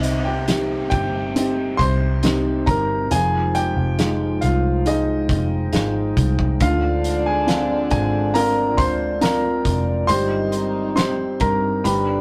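Melancholic and heartbroken, this slow pop ballad in C minor at 69 BPM sets an up-front, clear grand piano melody with tape echo over a soft, felt-muted upright piano, an ethereal glass harmonica holding chords in the background, a round, foam-muted electric bass and a loose indie drum kit with a fat snare and punchy kick, while an electronic downlifter sits far back until 6.6 s, when a classical-style French horn section with light vibrato enters on a second line, all captured in a rough rehearsal-room recording with moderate small-room reverb.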